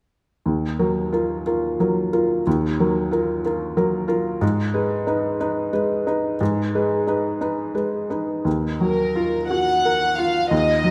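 A rough home demo mix bathed in a lush, wet hall reverb opens this short neoclassical fragment for piano and strings, cut from a longer piece. In Eb minor and 6/8, it moves with a rubato feel at 60 BPM counted in dotted quarters, and its mood is one of fragile longing. A felt-muted upright piano carries the accompaniment from 0.5 seconds, sitting up front with a mellow, intimate tone, the thin felt and audible action noise giving it a close, natural character. The harmony rests on Ebmadd9 before shifting to Abm and returning to Ebmadd9 as a new section begins. At 8.8 seconds a dark symphonic violin section takes up the melody, its soft-attack sul tasto bowing producing a pure, floating ensemble sound that stays until the close at 10.9 seconds.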